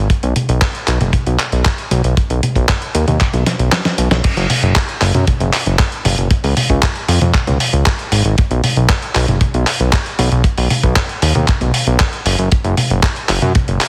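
A fat, detuned sawtooth analog bass anchors this melodramatic, nostalgic italo disco excerpt, its thick, sustained tone evolving under a filter sweep with a fast attack. Alongside it sits a gritty, tape-warm sampler-style kit of snare, hi-hat, handclaps, toms and crash, plus a dry, tight acoustic kick, all up front with studio reverb. A drum fill runs from 3.5 to 4.2 seconds, with the kick dropping out from 3.7 s before the groove moves into a new section, and the whole mix carries a heavily compressed, radio-style sheen in a small room.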